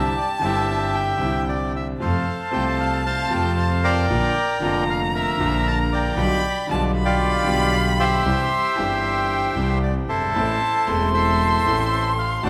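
A reedy, close-miked bandoneon carries the melody up front from the opening moment of this nostalgic, passionate tango, joined at once by a bowed solo violin with expressive vibrato, soft attacks and portamento on a high second line. Beneath them, a clear concert grand piano with a deep, smooth, vintage low end supplies the accompaniment, while a single bowed double bass gives a biting, even bass line touched with light vibrato. The music moves at 115 BPM in 4/4 with a rubato feel, passing through Cadd9, F, Bb and G7/B to C before settling on Am. At 10.3 seconds, a very quiet chamber string section adds dark, nasal stabs with a gut-string, period-style tone and a smooth top. A wet large studio reverb surrounds the ensemble, though the bandoneon itself stays dry and full, and the passage is cut from a longer piece, ending at 12.5 seconds.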